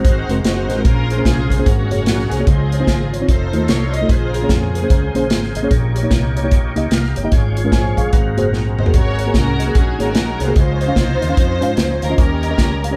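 Up-front acoustic drums with a punchy kick and medium-tuned snare drive this uplifting, hopeful swung gospel excerpt, joined by a punchy fingered electric bass, a mellow tine electric piano, and a gritty overdriven tonewheel organ holding thick sustained chords through a slow rotary speaker with chorus vibrato, while a lush, woody bowed string section carries the melody, pausing from 5.3 to 8.8 seconds as a drum fill arrives at 8.5 seconds, all in a moderate large studio room.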